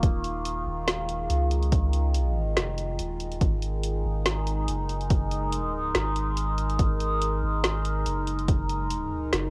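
A lo-fi, cassette-worn home recording with light reverb opens on a dark, cavernous slice of deep dubstep at 142 BPM in a swung half-time 4/4, cut from a longer piece and moving from Eb5 to Ab5 at 3.4 seconds. A bright, wave-folded drone with moving overtones holds sustained chords through chorus, phaser and its own reverb, while a round, mellow sub bass with tube saturation sits deep beneath it. Up front, a punchy electronic kick drives until 8.6 seconds alongside a deep house kit of woody snare and dark hats, both re-recorded in a small room.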